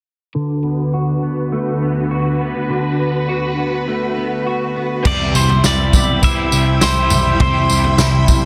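A fingerpicked pedal steel guitar with volume swells sings a delayed melody from 5.1 seconds in this ethereal, dreamy dream pop excerpt, where a dark, compressed clean electric guitar plays chorused arpeggios over a silky string machine under a filter sweep, then a shift to Cmaj7 at 5.0 seconds brings in a punchy, foam-muted vintage bass, an up-front acoustic drum kit with dark cymbals and a tight kick, and a bright overdriven guitar in the background with harmonic tremolo, joined from 5.6 seconds by a very quiet, sparkling glockenspiel, all in light small-room reverb with a dense, heavily limited master.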